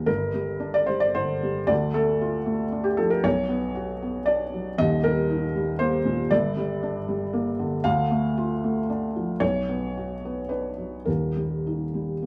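In a rubato 3/4 lilt drifting between 102 and 120 BPM, this melancholic, reflective stretch of neoclassical minimalist piano, cut from a longer piece and tuned to A4 = 444 Hz, gives a solo felt-muted upright piano with a thick-felt, intimate, mellow tone placed up front from its deep Eb1 up to F5 for its full 12.3 seconds, cycling twice through Gm, Dm, Bm and Eb inside moderate studio reverb, played live in one room.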